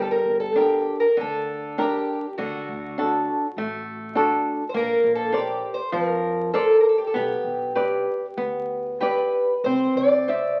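A mournful, passionate fado-style ballad in G minor at 99 BPM with a rubato feel features a shimmering, octave-doubled fingerpicked twelve-string acoustic guitar carrying the up-front melody with audible finger squeak, together throughout with an up-front flamenco guitar accompaniment and a woody pizzicato upright bass in the background, all bathed in moderate large studio reverb and the vinyl crackle of a very old 78 rpm record as the chords move from Gm through D, Bbadd9 and G/B to Cadd9 in this cut from a longer piece.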